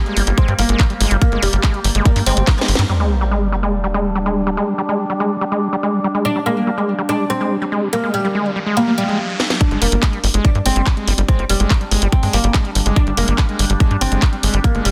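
A resonant sawtooth drone with moving overtones, chorus and reverb opens this driving psychedelic trance excerpt at 143 BPM in G phrygian. It is soon joined by a squelchy, gritty acid bass riff with delay, a woody, plectrum-plucked fretless oud melody with phaser, a punchy sequencer bass, an up-front electronic kick, and a garage kit of handclaps, hi-hat and cracking snare, while the drone, acid bass and oud all carry sidechain pumping. At 2.9 s the drums and sequencer bass drop out for an impact and sub drop, the oud returns at 6.2 s, and a riser and drum fill lead back into the full drop at 9.6 s.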